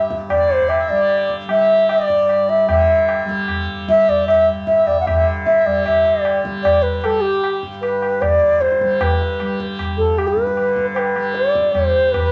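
Meditative and radiant, this Hindustani classical excerpt in raga bilaval on G moves at 152 BPM in a straight 4/4, with an airy, close-miked bamboo bansuri carrying the melody up front with vibrato and tongued notes, a reedy, breathing pedal harmonium adding a second line until 5.9 s and returning briefly at 12.2 s, a softly plucked, buzzing tanpura drone shimmering beneath, and high-tuned tabla with a short ring entering at 0.1 s, set within moderate studio reverb.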